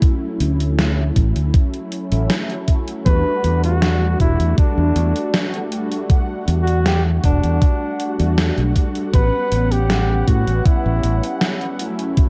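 A mellow flugelhorn carries the melody from 3.1 seconds, its soft-attack, scooped notes softened by tape echo, while a round, fingered electric bass sits up front beneath it. This nostalgic, melancholic vaporwave excerpt moves at 79 BPM in 4/4 in E dorian. A sawtooth synth brass pad with phaser, chorus and analog delay drifts through Dmaj9, Em11 and A13 over a thumpy, tape-kissed electronic kick and a gated 80s drum machine hi-hat and snare, all in a dark, warm digital ambience.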